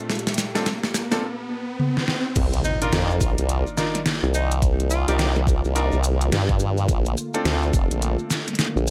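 A gritty, funky glitch hop passage taken from a longer piece, heard in a small room with moderate reverb. It runs at 106 BPM in 4/4 with a 61% swing on the sixteenths, sitting in C dorian. A build-up opens on Bbmaj7: a smooth, detuned analog pad with chorus and sidechain pumping holds dark chords in the background, and a brilliant grand piano plays short stabs carrying 12-bit sampler grit, digital delay and the same pumping. Meanwhile an electronic riser climbs, overdriven pop drums with a deep snare play fills up front, and grainy maracas sit close and dry behind them. The drop lands at 2.4 seconds on Cm11 with an impact, a knocking overdriven electronic kick and a wobbling formant-swept bass of sawtooth and sine, compressed and tube-saturated with chorus. From 2.6 seconds a breathy tenor saxophone solo adds jazz-style scooped notes and vibrato through digital delay, before the harmony returns to Bbmaj7 at 6.9 seconds.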